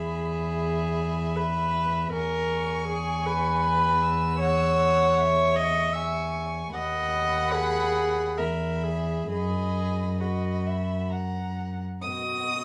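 Light small-room reverb surrounds this slow, lyrical classical movement for string quartet, a brief excerpt in B major and 3/4 that moves with rubato between 59 and 81 BPM and comes to rest on a B chord at 12.0 seconds. Two dark, woody violins carry the melody and a second line with vibrato, the lower one bowed sul tasto, while the viola, up front with a soft attack and a pure, floating tone, plays the accompaniment sul tasto. The cello supplies a warm, gently distant bass, also bowed sul tasto, beneath the other three bowed voices throughout.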